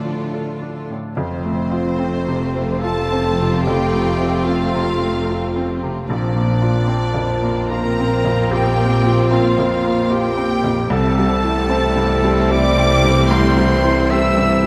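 Opening on a clear, vibrato-rich violin melody over a softer second violin line, brilliant background piano, rich violas, lush cellos and a very quiet, ringing fingerpicked harp, this moving, uplifting film-score passage in a rubato 3/4 gains a smooth solo clarinet at 1.1 seconds and dark, distant French horns with focused double basses at 1.2 seconds, set in a wet scoring-stage reverb as the harmony moves from Dm through F and Bbadd9 to C6.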